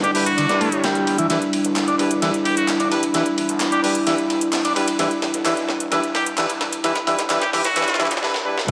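A nasal, straight-muted trumpet melody with AM-radio coloring and tape echo opens this playful, energetic breakbeat build-up at 130 BPM over an Em7 chord, joined from the start by a moody, detuned analog pad with sidechain pumping and 12-bit grit, a buzzy combo organ riff through a low-pass filter, a very quiet swirling saw bass, a gritty, compressed sampler-style break kit with a thumpy kick, and a background garage kit of handclaps and metallic hats, while a punchy horn section stabs in at 0.1 seconds, a drum fill runs from 1.3 seconds, and a break arrives at 8.2 seconds inside an echo-heavy mix with a 2.0-second plate reverb.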